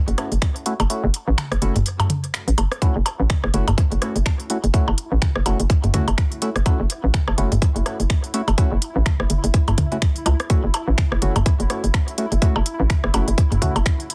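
A dense, heavily limited mix with little reverb carries this cool, sparse minimal techno excerpt at 125 BPM in F# minor, swung on the 16ths over a single F#m7 chord, where a tight, up-front electronic kick (dropping out from 0.9 to 2.8 seconds) and a hollow, bouncy FM bass knocking between F#1 and C#2 with tube saturation and sidechain pumping anchor an overdriven drum kit of finger snaps and smooth hi-hats, a tape-warm click kit of percussion blips, rim clicks and toms, and mellow, wave-folded organ stabs treated with chorus, phaser and delay, while a detuned, pulsing gated texture on E4 enters at 4.2 seconds in the background.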